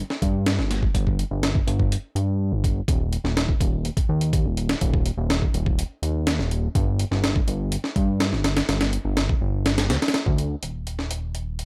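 Breakbeat in a raw, funky mood at 124 BPM in straight 4/4, this short excerpt pairs a fat, detuned analog bass, mixing sawtooth and square tones with tube saturation, a nasal edge and a fast, plucky filter attack, against a compressed, gritty, sampler-style drum kit that enters at 0.1 s. The pitched-up break has a thumpy kick, a high-tuned snare and hi-hats, all high-pass filtered and with a tape-warm tint, and both parts sit up front in a dry mix with little reverb. A new section arrives at 10.6 s, and both parts run to the end at 11.7 s.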